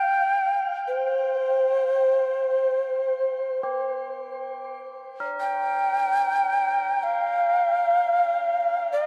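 An up-front, mellow cedar flute in the Native American style carries the melody of this spacious, haunting fragment of free-time world meditation music, its airy wooden tone marked by crisp chiff, vibrato and an unsteady breath softened by shimmer reverb and delay, while soft, solemn tubular bells ring quietly beneath from 3.6 seconds, all set in a huge, wet ambient space.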